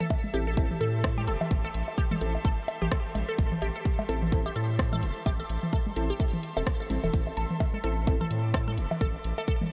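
A short cut from a longer minimal techno track, heard in a light digital ambience. It sits on A minor at 128 BPM, with a 58% swing on the 16ths giving a hypnotic, clinical pulse. A punchy electronic kick sits up front with a deep, thick sine sub bass, its tube saturation pumping against the kick. A house kit adds metallic hats and rim clicks, while electronic toms, bongos and congas carry tape echo in a small room. A juicy, squelchy pluck with a moving notch repeats a riff from G4 to A4 through phaser and delay, and a crisp digital chord stab decays in the background under tape echo. Behind it all, a close, biting string section bowed with light vibrato holds a texture up to E6, pumping with the kick.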